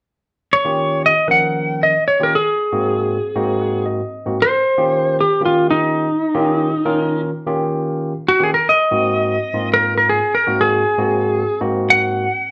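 A clean, twangy lap steel guitar carries the melody up front, playing a slide solo from 0.5 seconds to the close of this short blues fragment cut from a longer piece. Its compressed, fingered tone sits over a barky tine electric piano, lightly overdriven and direct, which handles the accompaniment and adds a brief fill between 3.4 and 4.4 seconds. The mood is swaggering and gritty, moving at 116 BPM in 4/4 with a 16th-note swing feel, and the changes shift between Eb7 and Ab7. The band plays live in one room, with a moderate large-studio reverb around them, and the tuning sits slightly sharp at A4 = 444 Hz.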